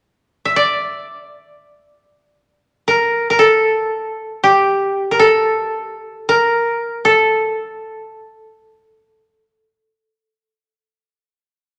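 A solo koto, bright and woody, played with fingerpicks and placed up front in a moderate recital-hall reverb, enters at 0.5 s with a calm, austere melody in free time in the A sen mode, moving between G4 and E5 until 10.7 s in this short fragment of traditional Japanese music cut from a longer piece.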